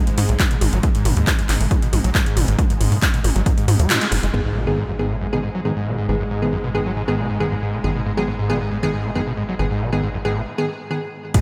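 Driving peak-time techno in a straight four, dark and relentless, heard as a short slice of a longer track soaked in a dreamy hall reverb. From the first moment a squelchy, screaming acid line with distortion, chorus and tape echo pumps against a swarming, detuned drone that sits in the background with its own lush chorus and built-in reverb. A tight sawtooth sequencer bass with a plucky filter joins at 0.2 seconds, while a punchy, up-front electronic kick and a drum kit of handclaps, metallic hats and toms drive the opening, the kick dropping out at a band accent at 3.9 seconds. At 4.3 seconds an impact and sub drop mark the arrival of a G# minor chord, carried by a crisp, detuned wavetable stab placed up front with tape echo and sidechain pumping. The drums sit out through this second passage, leaving the acid line, drone, bass and stabs to push on until a break at 10.5 seconds, with kick, kit and effects briefly returning at the very end.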